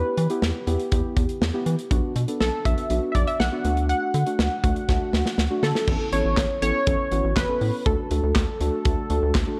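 Cool and driving, this synth-pop excerpt at 121 BPM sets a funky, detuned sawtooth polysynth carrying the melody through chorus and analog delay over soft, muted felt-like synth keys and a rubbery, saturated square bass, while a modern studio drum kit with a punchy kick, handclaps, hi-hat, snare and crash enters at 0.2 seconds and plays a fill from 4.9 to 5.9 seconds as the chords move from Em through Bm and D to Aadd9, all in a dark production with light small-room reverb.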